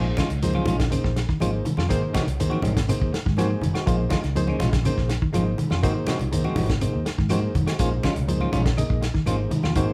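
A barky, reedy electric piano accompanies this defiant, intense afrobeat passage, lightly overdriven with a fast tremolo, and it plays a brief fill from 3.1 to 3.9 seconds. At 122 BPM in a straight 4/4, the band moves between Bb minor seventh and Ab seventh chords, with a round, amped fingered electric bass anchoring the low end. In the background, a dark, clean electric guitar plays arpeggios, while a hollow-body semi-hollow guitar adds clean stabs. From 0.2 seconds a dry, mid-forward soul drum kit sits up front with a tight kick, a medium-tuned snare, hi-hat and a rolled-off top. Bright, hard-handed congas and a grainy shekere sit farther back in a large room, joined by very quiet, woody claves. The band plays live together in one studio with moderate reverb, and the recording is cut from a longer piece.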